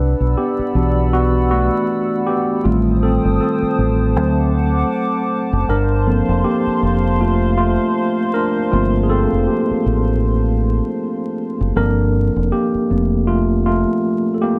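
Lightly swung sixteenths in 4/4 set a relaxed lo-fi hip hop pulse for this nostalgic, hazy cut from a longer piece, dusted with vinyl crackle and light reverb. A clean, up-front tine electric piano carries the lead through cassette-tape coloring, a low-pass filter and plate reverb, over a round, punchy dub electric bass that sits dark and direct until 13.8 seconds. A hollow, flute-like pad with a slow attack, chorus and plate reverb holds mellow sustained chords high above, stopping at 11.7 seconds while the piano continues to the end at 14.6.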